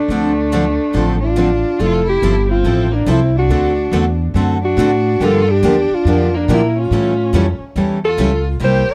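A breathy alto saxophone opens this fiery, virtuosic slice of acoustic string swing in the jazz manouche style, carrying the melody up front with a dark tone, light vibrato, scooped notes and a smooth top. Alongside it, a distant bowed violin traces an expressive second line with a rich sound, vibrato and portamento. At 0.1 seconds two picked steel-string acoustic guitars join in accompaniment on fresh strings: one is warm with an auditorium body, while the other is bright and boxy with a parlour character and audible finger squeak. A pizzicato upright bass on gut strings sits up front, woody and thumpy. The tune swings at 141 BPM in 4/4 in D minor, moving through Dm7, Fmaj7, D7, Gm7 and A7b13. The sound is a dry, close 1970s-style studio recording, and this passage, cut from a longer piece, ends at 8.9 seconds.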